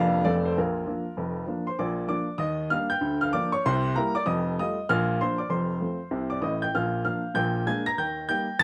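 A clear upright piano opens this short stride jazz piece alone and carries it from start to finish, its woody tone sitting up front in the mix. The mood is exuberant and swinging, moving at a brisk 195 BPM in 4/4 with a 64% swing on the eighth notes. In B-flat major, the playing spans from deep F1 bass notes up to a high B-flat. The harmony moves through chords like Ebmaj7, Bb/D, C7 and F9 before settling back on B-flat, then turns through Bb7 toward Eb just as the piece breaks off at 8.6 seconds. A wet studio reverb with a short 0.5-second decay surrounds the natural piano sound, and this brief passage is cut from a longer performance.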